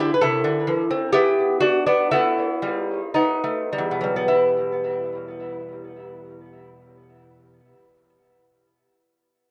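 A delicate, fingerpicked solo lute with gut double strings, some doubled at the octave, plays up front from E2 to B4 with a touch of tape echo in this grave, solemn excerpt of a baroque-style classical dance in 3/4 and E minor, tuned to A4 = 444 Hz, moving with rubato between 51 and 68 BPM, slowing through its opening phrase over Am/C, Em/B and B7 before settling on Em at 4.3 seconds for a second phrase, all captured in a dry, close 1970s-style studio sound with light reverb.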